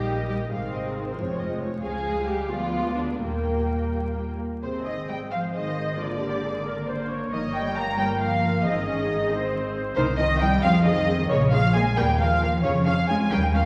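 Muted violins open this cheerful, spirited classical-period movement for string orchestra at once, the first section carrying a veiled melody in Ab major at 90 BPM in a straight 6/8 while a second violin line, dark con sordino violas, lush cellos and up-front double basses fill out the harmony beneath. All five sections play together throughout this roughly 13.7-second cut from a longer piece, with soft attacks and vibrato on the violins, and a new section beginning at 4.6 seconds that moves through a series of seventh chords. The sound comes from further back in a reverberant scoring stage with vinyl crackle over it.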